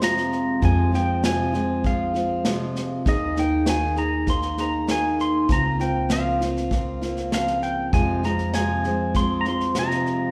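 A straight, unhurried 4/4 pulse sets this brief acoustic folk excerpt moving, carried by a vintage brush kit with a tight kick and a medium-tuned snare whose rolled-off top keeps it soft. Beneath it, a pizzicato upright bass on gut strings adds a woody, thumpy low end, while a picked steel-string acoustic guitar sits up front with a concert-style accompaniment. Over them, a clean, twangy pedal steel guitar plays the melody high in its range, sliding and swelling in volume under fingerpicks, its compressed, bright tone forward in the mix. The harmony moves from Fm to Ebsus4 and Bbmadd9/Db before settling back on Fm, giving the small band a wistful, intimate mood. A lush recital-hall reverb of about 1.4 seconds wraps the whole group in the air of a church or concert space.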